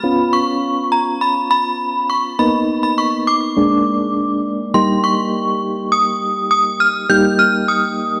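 A moderate plate reverb surrounds this dark, warm pop production, a short fragment cut from a longer piece that feels bright and nostalgic at once. Up front, a vintage FM synth chime carries the melody in a high register, its inharmonic, ringing tone warbling through an ensemble chorus and a slapback echo, with each mellow note striking fast and then hanging on a long release. Beneath it, soft electric-piano-like synth keys supply the accompaniment in a lower register, their round, gentle sine-and-triangle tone shimmering with chorus and tremolo as each note decays. Both parts play together from start to finish, moving through Db7, Cbmaj7 and Bb7 before the harmony settles on Eb as a second passage begins at 4.7 seconds.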